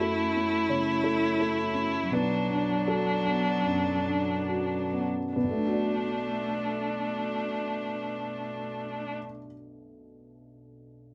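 Fragile and reflective, this short neoclassical piano-and-strings excerpt in B minor moves with a rubato 4/4 feel between 67 and 88 BPM, slowing down over its opening 5.3 seconds as it passes from F#m7 to Bm7. A rich, smooth violin carries the vibrato-laden bowed melody while a single cello adds a focused second line beneath it. A soft, boxy felt-muted upright piano accompanies intimately from the front and rings on alone until 11.1 seconds after the strings fall silent, all within a moderate studio ambience.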